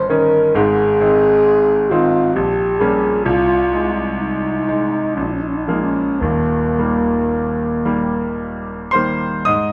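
In a flexible 3/4 with rubato, drifting between 54 and 67 BPM, this serene, lyrical fragment from a longer romantic classical piece pairs a mellow, distant French horn singing the melody between Bb3 and Bb4 with a concert grand piano accompanying from Eb1 up to Eb6. The piano sits up front, bright and brilliant yet slightly worn, with deep bass, moving through harmonies from Eb7/G and Ab to Gdim/Bb, Ab/C and Bb5 before settling on Eb at 6.2 seconds. A moderate recital hall reverb and close, detailed microphones frame the roomy horn, which ends at 8.9 seconds while the piano carries on to 9.7 seconds, all tuned to A4 = 441 Hz.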